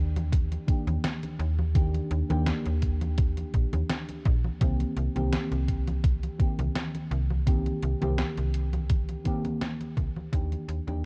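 A lightly swung 4/4 groove from a thumpy, tape-warm electronic kick and a detuned 8-bit drum machine of congas, hi-hat and snare carries this hazy, nostalgic vaporwave fragment, where a snappy, metallic FM slap bass sits up front beneath a soft, round, dark FM electric piano drenched in phaser, lush chorus, cassette tape and tape echo, drifting from Ebmaj7 to Cm7 before the cassette-worn, dry-sounding recording fades out from 8.4 seconds.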